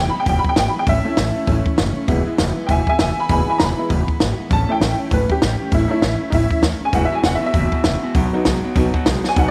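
A jangly, detuned honky-tonk upright piano takes a rollicking solo up front from the opening, backed by a full-bodied picked acoustic guitar in the background and a woody, thumpy pizzicato upright bass, with a dry compact cocktail kit of punchy kick, high-tuned snare and hi-hat joining at 0.3 seconds. This retro rockabilly passage rides on swung eighths over E, A and B chords, and at 6.9 seconds a twangy, slightly broken-up electric guitar riff through a small old amp slips in behind. A drum fill at 9.2 seconds closes this short cut from a longer piece, heard in a light studio reverb.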